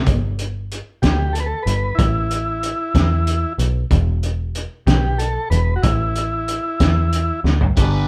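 A short cut from a longer psychedelic rock piece opens on a brief hit from a reedy, bright tonewheel organ turning through a slow rotary speaker, a thick, double-tracked fuzz guitar run through a phaser, and a dark, round overdriven picked bass that carries on for the whole clip. The mood is mysterious and hypnotic, moving in a straight 6/8 at 62 beats per minute counted in dotted quarters, over power chords on G, A, E and back to A. A muffled, cloth-damped drum kit with a fat snare, tight kick, hi-hat and toms sits up front with a gritty, rolled-off small-room sound. At 1.0 seconds a buzzy vintage combo organ with heavy vibrato takes the melody in a narrow upper range, continuing until a drum fill at 7.4 seconds. At 7.8 seconds the fuzz guitar and the tonewheel organ return together, all within a moderate studio reverb that gives the feel of a band playing live in one room.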